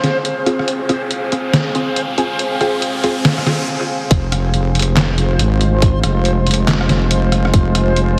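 A swung, half-time groove in 4/4 drives this brooding, cavernous deep dubstep excerpt, carried from the start by a muffled, pitched-down sampler-style drum kit of handclaps, hi-hat, rim click and a medium-tuned snare, compressed and up front. Beneath it a deep, moody pad of detuned sawtooth and sine layers holds slow-blooming sustained chords, while a reversed, granular texture swells dreamily in the background. Through the build-up, a muted, detuned dub chord stab with phaser, lush chorus and dub echo plays filter-swept stabs until 3.6 s, as an electronic riser builds toward a brief break at 3.7 s. The drop lands at 4.1 s with a tight, layered electronic kick up front and a heavy, wobbling bass of sawtooth and sine, saturated and chorused yet mellow. A lush hall reverb gives the mix a cavernous depth, set against a heavily compressed, radio-like sound.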